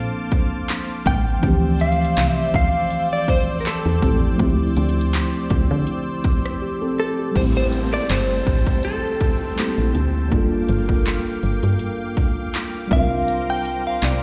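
A lightly swung 16th-note groove in 4/4 drives this slow, longing, sensual contemporary R&B piece, carried by a hard-clipped, overdriven trap kit of kick, rim click, handclaps, bright hi-hats and crash, set up front. A mellow tine electric piano and a lush, detuned unison pad with chorus lay down rich extended chords from the start. A woody, round FM bass and a clean, direct-recorded electric guitar, scooped and compressed with analog chorus and digital delay, enter at 1.1 seconds, the guitar picking out the melody. A very quiet, crystalline synth bell with warbling tremolo adds shimmer through the first half, and a brief silence opens at 6.6 seconds before the harmony shifts into a passage of minor-seventh chords. A faint electronic downlifter sweeps in the background from 7.4 seconds, all held in a large, reverberant room sound.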